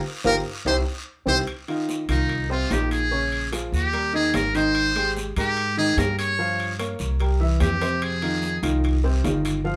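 This driving, sophisticated Afro-Cuban jazz in F minor at 147 BPM opens on a band accent: a dark, breathy trombone heard only until 1.4 seconds, thumpy pizzicato upright bass, ringing metal-shell timbales, raspy guiro and a clear, open upright piano. A drum fill at 1.3 seconds leads into a muted trumpet solo from 1.5 seconds, its metal mute lending a buzzy, brilliant edge with scooped notes and light vibrato, up front yet roomy. Woody bass and piano carry the harmony from Bbm7 through Abmaj9 to a closing Fm7, with the band sounding live in one room.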